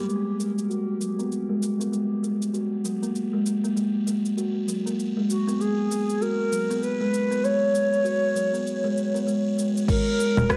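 A buzzing, woody kalimba plays close, up-front arpeggios through a low-pass filter sweep and tape echo, opening this earthy, meditative organic downtempo excerpt in G# minor at 98 BPM with a swung 16th feel, over a layered deep house kit of congas, rim click, shaker and crash cymbal, before an airy, chiffy low wooden flute carries a distant, unsteady melody from 5.3 seconds, and a round sine sub bass with sidechain pumping and a punchy electronic kick drum arrive at 9.9 seconds, all colored by spring reverb and the lo-fi character of a home cassette recording.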